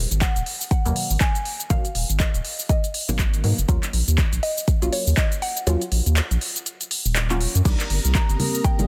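A deep, layered electronic kick sits up front in this hypnotic deep house excerpt at 121 BPM, riding a 16th-note swing. It drops out at 5.7 seconds and returns at 7.7 seconds. Beneath it, a round analog bass with a fast attack carries the low end and pumps against the sidechain. A smooth-hatted drum kit adds handclaps, shaker and crash, while a muted, nasal dub chord stab, treated with phaser, chorus and tape echo, outlines Abm7, Ebm7 and then Cm7. Above these, a woody, mallet-like FM pluck with dub echo plays the melody. Near the close, a shimmering vintage string machine enters in the background, followed by a moody, detuned analog pad, and bright, dry congas join at 8.4 seconds, all within a dense, heavily limited mix with little reverb.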